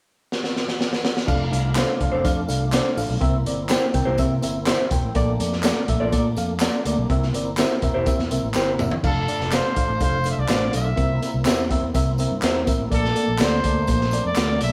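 The recording sounds like a band playing live together in a moderately reverberant stone room, with a gritty, saturated drum kit pushed up front. This is an uptempo 1960s-style soul groove at 124 BPM in 4/4 and F major, with an uplifting, joyful mood, and it is cut from a longer piece. The drums play alone with a fill from 0.3 seconds. At 1.3 seconds the rest of the rhythm section arrives: a punchy fingered electric bass, a reedy electric piano with fast tremolo, a lightly overdriven tonewheel organ holding sustained chords through chorus vibrato and a slow rotary speaker, and tambourine and group handclaps in the background. An electric guitar through a small old amp adds slightly broken-up, lo-fi stabs with spring reverb from the back of the mix, while the chords cycle through F6, C7 and Bbmaj7. After another drum fill, a bright trumpet with vibrato takes the melody at 9.1 seconds, sitting up front yet sounding distant and roomy.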